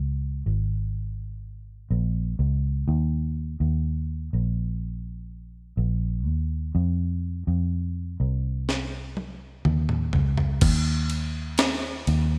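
A pop ballad with a longing, melancholic mood, this short cut from a longer piece moves at a slow, straight pulse in four. A vintage muted fingered electric bass carries the opening alone, its dark, foam-muted tone round and punchy as it sits up front in the low register. At 8.7 seconds a breakbeat sampler-style drum kit enters with a fill, sounding gritty, compressed and pitched up, with a thumpy kick and a high-tuned snare alongside crash, ride and toms. Gated reverb gives the drums their character, while the overall room stays dry under a bright 1980s-style digital production. The fill leads into a new section at 10.6 seconds, and the bass plays on to the end of the clip.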